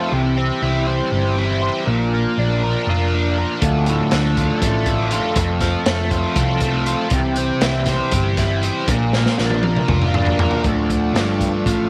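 Dark and hypnotic, this short psychedelic rock excerpt runs at 240 BPM in eighths, in a straight 7/8 in D minor. A biting, bright overdriven guitar carries the riff from the start, picked and double-tracked up front and run through a rotary speaker, while a vintage, buzzy combo organ holds clean sustained chords beneath it. A round, hollow-body short-scale electric bass adds a dark, amped low end, and the chords move from C through Bb, Dm and F before returning to Dm. A crunchy breakbeat kit of hi-hat, kick, snare and toms enters at 3.6 seconds, saturated and gritty with a tight kick, a medium-tuned snare and a rolled-off top, and it plays a fill from 9.1 seconds. At 10.6 seconds the transistor combo organ takes a brief solo as the section changes. An echo chamber reverb and small room ambience give the whole an enclosed, vintage air.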